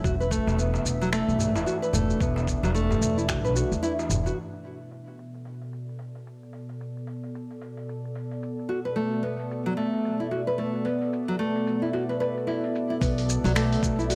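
Meditative and warm, this organic downtempo excerpt sways on a swung feel, built over a warbling, nostalgic pad of detuned sustained chords that breathes with sidechain pumping beneath chorus and its own reverb. Up front, a full-bodied nylon-string guitar plays fingerpicked arpeggios with audible finger squeak, alongside a woody, growly pizzicato upright bass and a thumpy, compressed electronic kick. A crisp metal-shell darbuka sits distant in the background, while a dusty, sampler-style kit of finger snaps, hi-hat and shaker, muffled by low-pass filtering, runs throughout. The kick drops out shortly before the bass, darbuka and guitar fall away around 4.4 seconds, leaving the lo-fi pad and the dusty kit, with a filter sweep on the pad, until the guitar returns, echoing through tape delay, at 8.7 seconds. The bass and kick come back at 13.0 seconds, and the whole recording carries a dry, gritty hardware character with light small-room ambience.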